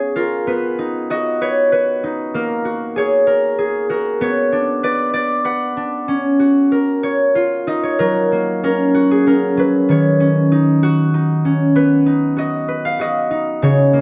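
This children's lullaby, cut from a longer piece, carries an innocent, tender mood at 96 BPM in a gentle 3/4 time, set in F# major with tuning at A4 = 442 Hz. A solo concert harp plays throughout the 14 seconds, fingerpicked and ringing, spanning C#3 to F#5. Its acoustic tone sits up front in the mix, surrounded by light reverb. The harmony moves through colours such as F#add9/A#, Bmadd9 and D#sus2 before a second section begins at 8.0 seconds, settling through F#, D#m7 and B. The result is an intimate, softly glowing bedtime miniature centred entirely on the harp's warm, ringing strings.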